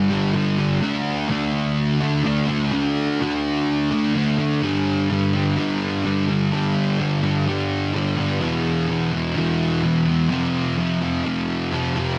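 A straight 4/4 pulse at 127 BPM drives this short rock passage in G major, cut from a longer piece and carried entirely by a lone fuzz guitar from 0.0 to 12.2 seconds. The mood is dreamy and hazy, with the electric guitar picked, double-tracked and compressed, sitting up front and ranging from E2 to D4. Its fuzzy, distorted tone is thickened by a lush chorus, giving the power chords a blurred, velvety edge. The harmony moves from G5 to D5, then a new section at 4.6 seconds returns to G5 before shifting to E5 at 8.4 seconds and F5 at 10.3 seconds. A moderate scoring-stage reverb lends the sound some air, while the dense, heavily limited modern master keeps it tight and full.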